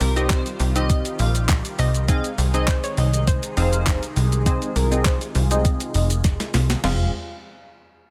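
Dance-pop at 101 BPM in 4/4, bittersweet and driving, built on a crisp 8-bit drum machine with thumpy kick and fat snare, a punchy, funky analog bass with sidechain pumping up front, a chorused polysynth comp entering at 0.2 seconds, a detuned supersaw swell holding Cm, Ab and Fm chords under a phaser, and airy, dreamy sine lead and hollow, bouncy square pluck melodies drifting in the background through dub echo, all set in digital ambience beneath a filter sweep that closes with a drum fill from 6.2 to 6.8 seconds in this short cut from a longer piece.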